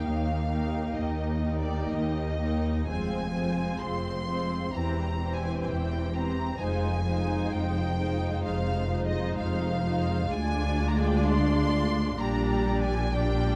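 In a rubato 4/4 at about 64 BPM, this slow, romantic movement for string orchestra unfolds with a lyrical, tender mood in a passage cut from a longer piece. The first violins carry the melody high between D5 and C6 with smooth, lush vibrato, while a second violin line moves beneath them from F4 to D5 in the same even, bowed sound. The viola section adds a clear, focused accompaniment that sits at a slight distance. Underneath, the cellos hold a rich bass from the background, and the double basses reinforce the low end with an expressive, vibrato-laden tone. All five sections play together from 0.0 to 13.6 seconds through harmonies moving from Eb to Fm, C/E, Fm7, Ddim and Gm/Bb. A light reverb and a dark production give the ensemble a soft glow.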